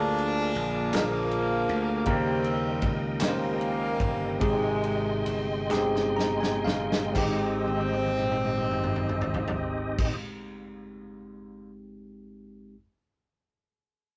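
A rough rehearsal-room recording with moderate studio ambience frames this short cut from a slow, uplifting gospel piece in 6/8 and Ab major, moving at roughly 39-53 BPM in dotted quarters. A roomy, jazz-style horn section carries the melody up front, while a bell-like tine electric piano supplies clean accompaniment and a reedy tonewheel organ holds sustained chords through a fast rotary speaker and chorus vibrato, its key click audible. Beneath them, a growly, overdriven slap bass adds punch, and an acoustic small-room drum kit with a medium-tuned snare plays crash, ride and toms, while crisp group handclaps sit in the background. The harmony moves from Bb7 through Eb7 to Abmaj7 as the tempo slows, and fills from the drums and electric piano lead into a new section at 7.2 seconds, giving a hopeful lift. The drums add a further fill before they stop, and the electric piano plays on alone until 12.8 seconds.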